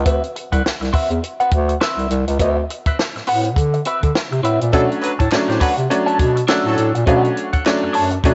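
A swung sixteenth-note groove at 103 BPM drives this gritty, energetic funk excerpt, where a dry, up-front cocktail drum kit with a high-tuned snare and tight kick supports a low, classical-style bass clarinet line and a clean, compressed electric guitar colored by wah and spring reverb, before a bright, woody, slightly detuned upright piano punches in stabs and a clear, vibrato-rich horn section adds a second line at 4.7 seconds, joined by a crisp, very quiet group handclap at 5.3 seconds as the harmony moves from D13 to Bm9 in a small, lightly reverberant room.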